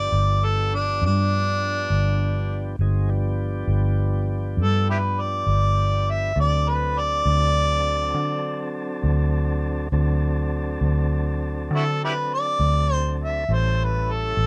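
Rollicking yet laid-back, this slow blues in a straight 12/8 is a short cut from a longer piece, with all three parts playing together throughout its 14.5 seconds. A mellow, jazz-style harmonica carries the solo melody up front, its soft attack, scooped notes and tongue slaps given grit by a touch of overdrive. Beneath it, a tonewheel organ holds smooth, clean sustained chords, its key click audible and its tone turning through a slow rotary speaker. A vintage foam-muted electric bass, fingered and amped, sits prominently with a dark, round tone. The harmony moves from G7 to D7 at 6.4 seconds, reaching A7 at 13.5 seconds, all in a dry, rough home-demo mix.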